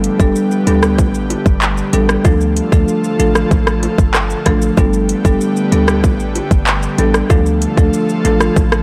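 A straight 4/4 dancehall groove at 95 BPM drives this short, hypnotic and tough clip cut from a longer piece. An up-front electronic island pop drum kit carries handclaps, hi-hat, kick drum, rim click and shaker, with a tight kick, metallic hats and an overdriven edge. A short, punchy 808-style bass with a fast attack and decaying sine tone sits low underneath. An up-front marimba played with medium mallets on rosewood bars adds woody accompaniment that stops at 8.5 seconds, while an airy, breathy pad holds soft, bright sustained chords treated with chorus and sidechain pumping. Round, low-tuned vintage bongos, played with soft hands and very quiet in the mix, enter at 1.0 seconds. The harmony alternates between Gadd9 and Dm in light reverb, and the overall recording sounds blown-out and overdriven.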